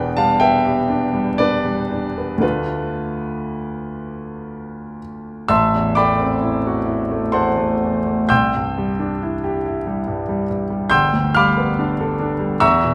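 A slow, rubato pulse in 3/4 drifts between 57 and 72 BPM, giving this short impressionist solo piano passage in A minor a hazy, mysterious air. A concert grand carries the whole cut, its tone clear and intimate, sitting up front with audible action noise and a deep bass that reaches down to E1, while its range extends up to G6. Coloured chords such as Em7 and Dm6 shade the opening, and the second section, from 5.5 seconds, moves from Am6 through Cadd9 to Gadd9. A wet recital hall reverb with a 1.5-second tail surrounds the natural piano sound. The fragment is lifted from a longer piece and ends at 12.9 seconds.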